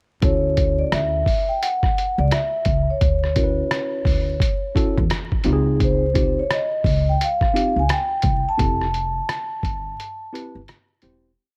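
Jazz-hop with a smooth, cool mood, built on a swung boom-bap beat from a muffled, compressed sampler-style kit whose thumpy kick and backbeat snare sit up front under a layer of vinyl crackle. A woody, dark pizzicato upright bass plays a syncopated line with chromatic approach notes, while a worn, slightly out-of-tune tine electric piano comps freely in rootless voicings with grace notes. A soft-mallet vibraphone, ringing and metallic with its motor off, sings song-like motifs until 10.5 seconds, as the piece fades out from 8.6 seconds and drops to a break at 10.0 seconds.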